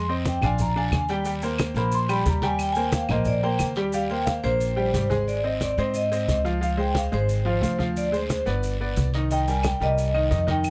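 Afro-Cuban jazz in Eb major at a lively 179 BPM, this sophisticated excerpt from a longer piece opens with a vibraphone solo, its metallic, ringing tone carried by tape echo and a medium motor vibrato, over a bright, brilliant upright piano with long sustain and a dark, thumpy pizzicato upright bass on gut strings. Low-tuned congas with a thick skin sound close and dry, while a raspy guiro and grainy maracas sit farther back, and woody claves play from 0.4 to 3.8 seconds before returning at 9.6 seconds. The harmony moves from Fm7 and Bb7 to Eb6, then through Dbmaj7 and Dm7b5 to Cm7, all in a close 1970s-style studio sound with light reverb.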